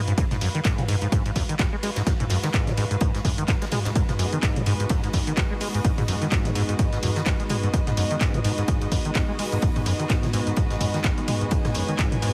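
A heavily compressed, radio-like sound with multiband squeeze and a moderate digital room reverb frames this trippy, raw acid house cut, taken from a longer piece and resting on a single minor chord with a swung sixteenth-note feel. An up-front, tape-warm electronic kick, re-recorded in a small room, punches through from 0.2 s, while a punchy analog drum machine adds handclaps, hi-hat, rim click and toms, and a very quiet acoustic arena kit contributes bright cymbals, a fat snare, hi-hat and ride from the hall behind. The squelchy acid bass riff is a resonant sawtooth with a fast attack, decaying notes and a filter sweep, roughened by overdrive and thickened with analog chorus, delay and sidechain pumping. A clear, smooth symphonic string section, bowed with vibrato and pumping to the sidechain, fades in from the very start and stays in the background. At 4.0 s a lush vintage string machine joins with full-ensemble sustained chords, a sub octave, slow attack and ensemble chorus, also pumping behind the groove.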